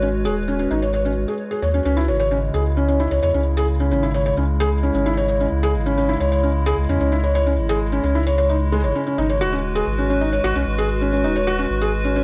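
Lightly reverberant digital ambience surrounds this short, intricate and glitchy IDM piece, cut from a longer track in straight 4/4. A felt-muted upright piano sits up front playing arpeggios, its soft, intimate and vintage tone carrying audible action noise and a digital delay. Beneath it, a warbling, lo-fi tape-like pad holds sustained chords with a slow attack, long release, chorus and its own reverb, giving the harmony a dark, nostalgic haze. A deep, round sine sub bass anchors the low end, mellow yet present, while a very quiet pulsing gated texture, detuned and tempo-synced, glimmers on a single high note until 1.9 seconds. The harmony moves from G#m7 to C#m at that point and returns to G#m7 at 9.2 seconds.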